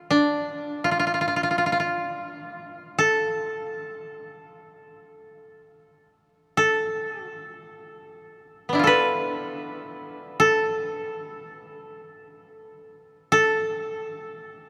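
A solo koto carries this short excerpt of Japanese chamber music, plucked with fingerpicks and placed up front, its tone woody and dry at the source. The mood is still and austere, moving at around 82 BPM in 4/4, though the beats fall unevenly in a free, rubato feel. The koto stays within a narrow span from B3 to B4 across its 14.7 seconds, unfolding as a single section cut from a longer piece. A moderate cathedral reverb with a long 5.9-second decay surrounds the instrument, so each plucked note hangs in a resonant, spacious room. The result is spare and contemplative, with the acoustic string's intimate attack set against that lingering ambience.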